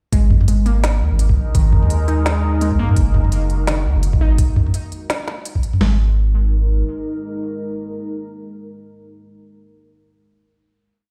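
A gritty, pitched-down boom bap drum kit with a thumpy kick leads this short, cinematic half-time drum and bass piece at 169 BPM, joined by a woody-snared electronic kit, long gliding sine 808 notes, a warbling lo-fi pluck whose 12-step loop drifts against the bar through chorus, phaser and delay, and a moody detuned sawtooth pad with sidechain pumping that sustains the final chord from 5.8 seconds, ringing in a stone room until 9.4 seconds.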